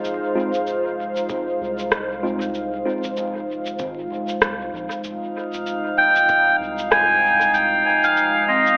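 A reedy, breathy melodica sits up front from 6.0 seconds, its close, dry tone sent into dub echo over a dark, detuned ambient pad holding an Fm7 chord in F minor, while a glassy texture of drifting overtones joins at 5.3 seconds. This hazy, deep ambient dub moves at 96 BPM in 4/4 with a swung sixteenth feel, carried by an electronic shaker and rim click in dub echo, a tape-warm analog kick and a round, soft sub bass in the background. Early on, a mellow tine electric piano adds echoed stabs, and a metallic vibraphone rings out at 8.5 seconds, all under wet spring reverb, vinyl crackle and a telephone-like colour in this fragment of a longer piece.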